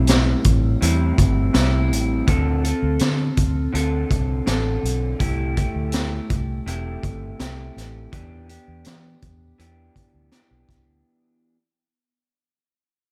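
Indie pop with a bedroom-pop haze, this mellow cut-out moves at a straight 82 BPM in A minor, cycling through Am7, Dm7, Am7/C and Em7 while fading out across its 11.1 seconds. An electric guitar through a small old amp carries the accompaniment with a lo-fi, slightly broken-up, compressed tone, lush chorus and warbly pitch drift, over a dark, round, foam-muted fingered bass that sits punchy and up front. A raw garage kit of kick, snare and hi-hat adds gritty, saturated drive with a high-tuned snare and rolled-off top, all in a dry, small-room sound.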